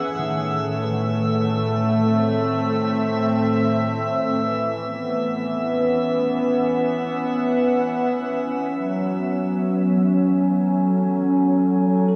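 A smooth, detuned analog pad holds sustained chords up front from the start of this serene, reflective ambient excerpt at 55 BPM in F# dorian, with a bell-like tine electric piano playing clean arpeggios with diffuse delay in the background and a glassy texture of drifting overtones until 8.8 s, all set in a vast, echoing reverb as the harmony moves from Am to E6 and settles on F#m7 at 8.7 s.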